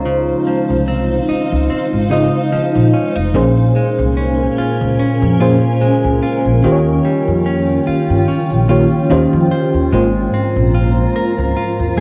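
Late-night and longing, this contemporary R&B excerpt moves with a light sixteenth-note swing over a chord cycle of Dbmaj9, Bbm7, Eb9, Eb13 and Ab69. A mellow FM electric piano with tremolo and a noise layer sits up front beside a woody pizzicato upright bass, while a cloudy, detuned granular pad hovers behind in its own reverb and a clean, compressed electric guitar picks arpeggios through tape echo. The piano, pad and guitar carry a cassette tape patina, and the moderate booth ambience keeps the home recording intimate.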